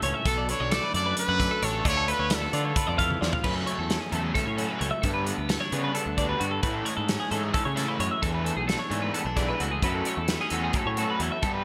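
A bright 1980s-style digital production with a moderate plate reverb carries this playful, wistful math rock and midwest emo excerpt in 7/8 at 263 BPM, where a clean, compressed twelve-string electric guitar comps beneath a twangy, chorus-drenched twelve-string playing arpeggios in the background, a punchy fuzz bass growls with overdrive, and a loose, up-front indie drum kit with gated reverb drives the pulse, while a bright, forceful jazz-style trumpet with light vibrato takes the melody from 0.3 to 3.2 s before a double-tracked overdriven guitar riff with subtle chorus enters at 3.4 s over chords moving from Bm7 through F#m9, Gadd9 and Amaj7.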